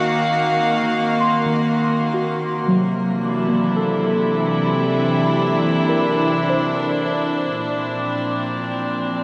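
Reedy, gut-string chamber strings hold sustained chords through this peaceful, luminous ambient fragment in three, while muted, detuned felt-like synth keys ripple arpeggios under chorus, diffuse delay and shimmer reverb until 7.9 seconds, all set in a vast, echoing cathedral space as the harmony moves from Ebm through C7 before settling on Bb at 7.6 seconds.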